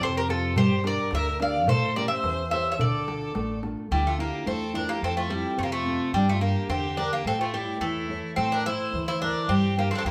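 A straight 2/4 pulse carries this moody, brooding Greek folk excerpt, with a metallic, double-strung bouzouki picking the melody up front, some strings doubled at the octave. A single bowed violin, clear and biting with vibrato, adds a nasal second line, while fingerpicked classical nylon-string guitar and a woody, growly pizzicato upright bass fill out the accompaniment, and a clay-shell darbuka struck with hard hands drives the opening before dropping out at 3.8 seconds. The band sounds as if playing live together in one room, bathed in a wet studio reverb.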